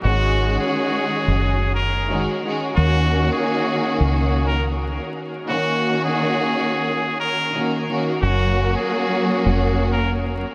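Swung sixteenths at 88 BPM in 4/4 drive this tough, moody boom-bap hip-hop excerpt in Eb minor, where a nasal, straight-muted jazz trumpet carries the melody with delay over lush, bowed studio strings and a dark, round, punchy fingered electric bass, moving from Ab7sus4 to Ebm7 at 2.8 seconds and Gbmaj7 at 8.2 seconds, the dreamy mix soaked in huge ambient reverb and vinyl crackle.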